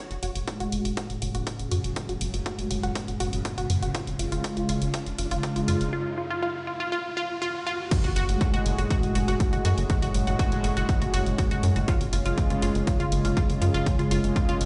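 Bathed in stone-room reverb on a big sound system, this driving, dark melodic techno cut from a longer piece builds for 7.9 seconds, with a filter sweep on the detuned unison pluck's dub-echoed arpeggios and on the brassy analog pad's stabs, a riser, and a tense string-like drone in the background, then drops at 7.9 s with an electronic impact. Throughout the excerpt, an overdriven, up-front electronic kick, a dry analog drum machine's crash and hi-hat, a tight sawtooth sequencer bass, and an airy, thick unison pad holding sustained chords carry the groove, all pumping to the kick's sidechain except the drums and effects.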